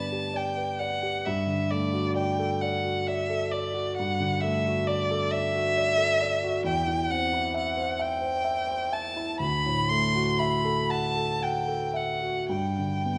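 A single bowed violin carries the expressive melody up front, its smooth top shaded with vibrato and portamento, in this tender, romantic classical duo cut from a longer piece. The concert grand piano accompanies throughout with deep bass, an open tone and long sustain, in a warm, flexible rubato 12/8. A moderate scoring-stage reverb, lingering about 1.8 seconds, surrounds both instruments.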